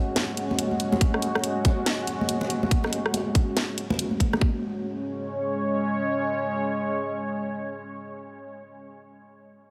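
Brooding and meditative, this deep dubstep fragment moves with a swung, half-time feel, built around a dark ambient pad of detuned sawtooth unison over a sub octave, its chords sustained with chorus and built-in reverb from the start to 8.6 seconds. A tight, tape-toned electronic kick sits up front from 1.0 seconds, while a garage drum kit of hi-hat, rim click and cracking snare plays alongside bright, high-tuned congas, distant and soaked in dub echo, until the drums and percussion drop out around 4.4 seconds. The whole has a heavily compressed, radio-like sound with light digital ambience, cut from a longer piece.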